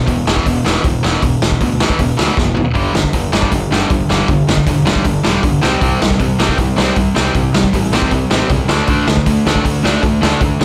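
A straight 4/4 punk rock drive at 157 BPM in G major, this upbeat, energetic excerpt opens with a tight, bright distorted guitar riff up front, joined at once by a dark, round fuzz-picked bass and a raw garage drum kit with a punchy kick, medium-tuned snare, hi-hat and toms that sounds gritty, roomy and rolled-off on top. After a drum fill at 2.4 seconds, a crunchy overdriven second guitar slips in behind at 2.8 seconds as the chords move from E5 through G5, C5 and D5. Light reverb gives the whole a small-room rawness.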